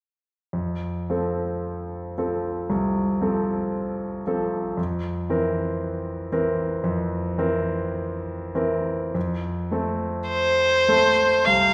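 In a free, rubato four-beat pulse, this serene romantic classical fragment opens with a brilliant, deep-bassed concert grand piano laying down smooth accompaniment over harmony that moves from F to C7/F and back, until a focused, warm violin with vibrato enters up front at 10.3 seconds to sing the melody, all carried by the lingering reverb of a recital hall.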